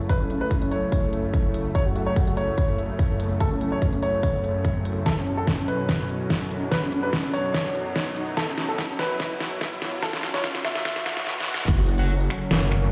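A lush, detuned supersaw pad pumping under a low-pass filter sweep opens this aggressive, chaotic heavy wobble dubstep excerpt in F# minor at 145 BPM in half-time. It is joined by a warbling, lo-fi tape-like pad in the background and a grand piano melody with short sustain and dub echo, while a punchy electronic kick and a drum kit with a deep snare, crisp hats, finger snaps and crash build through fills as a riser enters at 3.0 seconds. At the drop at 11.7 seconds, a heavy, saturated square-wave wobble bass enters up front, punctuated by a brief, bright double-tracked distorted guitar stab with dub echo, before a metallic FM wobble bass hits at 12.5 seconds. The whole mix sits in a plate reverb and a bare stone room, like a big sound system pushing into hard walls.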